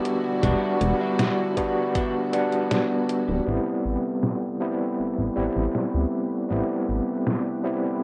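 A straight 4/4 pulse at 79 BPM carries this nostalgic, melancholic vaporwave fragment, built from a thumpy electronic kick that plays until 2.1 seconds and a detuned 8-bit drum machine whose up-front snare and filtered hats sit in reverb and take a filter sweep from 3.5 seconds, as the harmony moves from Em9 to Am9. A barky, overdriven tine electric piano with tremolo, chorus and delay provides the accompaniment over a glossy, up-front synth bass, while a twangy clean electric guitar riff stops at 3.3 seconds and nasal, lightly vibrato-tinged bowed strings hold filtered chords in the background. The rough home-demo mix has a cassette-tape character and digital ambience.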